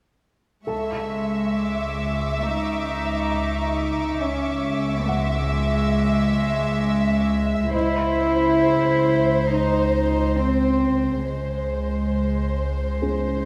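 A rich cello section sits up front in this cinematic suspense cue, its bowed sul tasto lines floating with a soft attack and a distant, pure tone as they carry the bass from 0.7 s. Beneath it, a symphonic double bass section holds a low C#, while a close violin section carries the melody with a floating, pure tone. A felt-muted upright piano adds a mellow, intimate texture, its short-sustaining notes carrying a vintage character and audible action noise. High above, a chamber violin section with light vibrato, a soft attack and a smooth top plays until 7.2 s. At a slow 68 BPM in 4/4 and C# harmonic minor, the harmony rests on C# minor before shifting to G# over C# at 7.7 s, and a moderate scoring-stage reverb wraps the dark production in a mysterious, eerie haze, cut from a longer piece.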